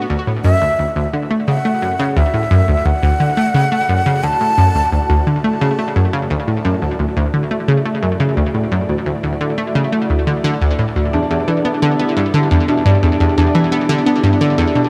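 A round, bright analog pluck sits up front from the first moment, playing a low riff through chorus and delay, while a lush, vintage string machine ensemble slowly fades in beneath it with sustained chords over a Dadd9 harmony. This luminous, expansive piece of sequencer-driven space music moves in a straight 4/4. The pluck blends sawtooth, square and triangle tones with a noise layer, ring modulation and a filter sweep, and the strings carry a sub octave, a moving notch, slow attacks and long releases bathed in ensemble chorus and shimmer reverb. From 0.4 to 5.3 seconds a breathy silver concert flute plays a high melody, its tongued notes and vibrato slightly unsteady, trailing shimmer reverb and delay. At 11.1 seconds the harmony shifts to Em7 as a fingerpicked concert harp enters with ringing arpeggios, also washed in shimmer and delay. A moderate plate reverb and the soft haze of cassette tape give this section of a longer piece a dreamy, faded glow.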